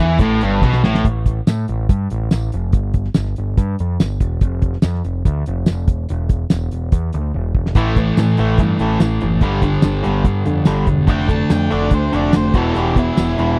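Swaggering, gritty classic rock at 144 BPM, cut from a longer piece, where two overdriven picked electric guitars (one touched with spring reverb) hit an A5 riff before dropping out at 1.0 s, leaving a growling overdriven picked bass and a cloth-damped, thuddy drum kit with fat snare, tight kick, hi-hat, toms and tambourine to carry the groove until a drum fill ushers the guitars back at 7.8 s through A5, G5, Dm/F and E5, with a dark octave-fuzz lead guitar entering on a second line at 11.1 s, all captured in a dry, close 1970s-style studio sound.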